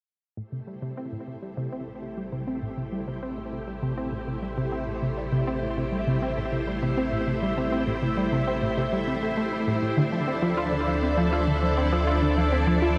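Ambient, sequencer-driven space music with a mysterious, cosmic mood, as a tight, driving, detuned sequenced synth riff with a mellow filter pluck, chorus and delay sits up front over lush, vintage string-machine chords with ensemble chorus, a deep, round analog bass and, from 1.0 s, a bubbling, resonant texture of random filter steps, each part fading in from 0.4 s within a huge, wet reverb as the harmony moves from Am7 to Dm7 at 10.0 s in this fragment of a longer piece.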